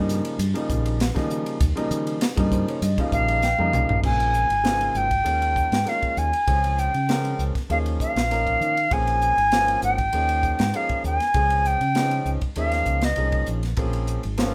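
Piano, fingered electric bass and a crisp fusion drum kit open this bright, soaring electric jazz fusion excerpt in Eb mixolydian at 99 BPM, with a clear, long-sustaining piano fill from 2.2 s leading into the silver flute's pure, vibrato-laden, tongued melody at 3.1 s, joined by a drum fill with dark cymbals and a punchy kick at 3.4 s. The melody rides over Bbm9, Eb9sus4 and Dbmaj7 changes and a warm, amped bass line in a live room with light reverb.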